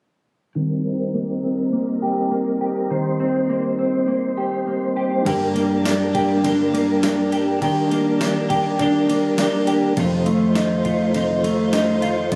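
A straight 4/4 pulse at 102 BPM carries this dreamy, blissful dream pop fragment in Eb lydian, where a soft, flute-like tonewheel organ with chorus vibrato and slow rotary speaker holds sustained chords up front beside a dark, fingered electric guitar playing arpeggios through analog chorus and digital delay, both bathed in plate reverb while a filter sweep runs until 5.3 seconds. Around 5.2 seconds a picked, compressed clean guitar joins with tremolo and ensemble chorus, and a 12-bit drum machine follows with thumpy kick, medium-tuned snare, ride cymbal and tambourine, its tape-warm samples re-recorded in a large room. The chords move from Gm through Ebmaj7 to F7, and the recording has the feel of a phone capturing the room, with studio ambience and compression.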